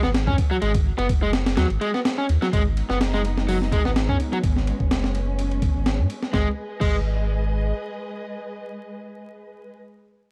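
A crunchy, overdriven electric guitar leads this swaggering, energetic breakbeat excerpt at 126 BPM in G# minor pentatonic, its picked riff sitting up front with tube saturation and tape echo. Beside it, a deep, thick sine sub bass with a fast attack and saturated edge holds the low end, while a compressed, sampler-style breakbeat kit drives the 16th-note swing with a thumpy kick, a medium-tuned snare, hi-hat, ride and crash in a small room. At 2.5 seconds a dark studio string section enters on sustained G# minor chords, its bowed, woody ensemble tone lush with vibrato, a soft attack and sidechain pumping. The guitar drops out at 6.9 seconds and the drums soon after, and once the bass ends at 7.7 seconds the strings carry the close on their own. The whole recording has a dry, gritty hardware character dusted with vinyl crackle.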